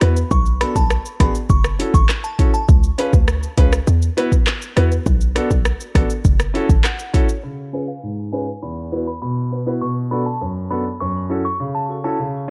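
Dancehall with a sultry, hypnotic mood, this is a short cut from a longer piece in a straight 4/4 groove. An electronic afro-pop drum kit sits up front with a deep kick, metallic hi-hats, handclaps, rim clicks and shaker, while a short, punchy 808-style bass with a tight sine tone and a noise layer anchors the low end until both drop out around 7 seconds. A polished baby grand piano plays the accompaniment throughout, its warm tone softened by a low-pass filter, and it adds a fill just before the second section begins at 7.4 seconds. Above it, a crystalline FM synth bell carries the melody at the opening and again in the second section, its vintage, warbling sound shaped by chorus, tape echo and a low-pass filter. The second section is built on the piano and bell alone under a filter sweep, cycling through minor seventh, dominant and suspended chords. The whole recording has a worn, old-cassette character with a warbly pitch drift and a digital ambience.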